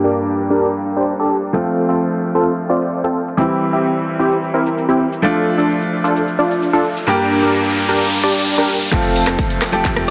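Festival progressive house with an uplifting, euphoric mood, heard in a short cut from a longer piece. A brilliant grand piano and a punchy, detuned supersaw stab carry the opening over a chord cycle of Gm, F, C and Dm, both pumping under sidechain and trailed by delay, while a filter sweep moves through the sound. A layered, overdriven big-room dance drum kit of handclaps, hi-hat, rim click and shaker sits further back, its cymbals and percussion shaded by low-pass filtering. An electronic riser enters at 6.9 seconds to push into a build-up at 8.9 seconds, where a drum fill arrives with a tape-warm, up-front electronic kick drum, a thick, mellow unison lead arpeggiating high with vibrato, and a menacing detuned saw bass murmuring low in the background. The whole mix is dense and heavily limited, bathed in a huge ambient reverb that leaves a long tail.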